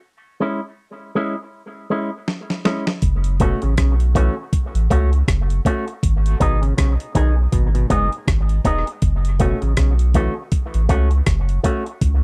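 A dry, close 1970s-style studio sound frames this meditative, hypnotic dub reggae cut, taken from a longer piece and set at 80 BPM in 4/4 with swung sixteenths, in F# dorian tuned to A4 = 436 Hz. A clean, picked electric guitar runs through an envelope filter, high-pass filtering and dub echo, sitting up front and compressed from 0.4 seconds as the chords move from C#m. A gritty, sampler-style drum kit with a thumpy kick, fat snare, rim click and hi-hat arrives with a fill at 2.3 seconds. At 3.0 seconds a deep, round sine sub bass lands up front, and the harmony shifts through F#m, G#m and back to F#m. In the background, a percussive, stringy auto-wah clav plays mellow arpeggios through a combo amp, trailed by its own dub echo.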